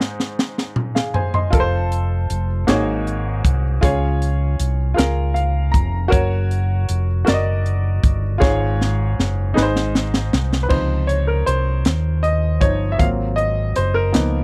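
A drum fill on a crisp fusion kit opens this slow gospel excerpt alongside a clear baby grand piano, setting an uplifting, reverent mood at 52 BPM in 6/8, in Db major. At 1.5 seconds the fingered electric bass enters, dark, round and punchy, anchoring the low end as the chords move from F through Ab9sus4 and Db to Gb. The kit sounds airy and polished, with dark cymbals, a high-tuned snare and a punchy kick, while the piano carries the accompaniment with a natural tone and short sustain, adding a brief fill around 5.0 seconds. Another drum fill leads into the closing passage, where the piano takes a solo from 10.7 seconds over Dbmaj9 and Ab13 chords. The dry, close 1970s-style studio sound keeps all three parts up front, and the piece is cut from a longer performance.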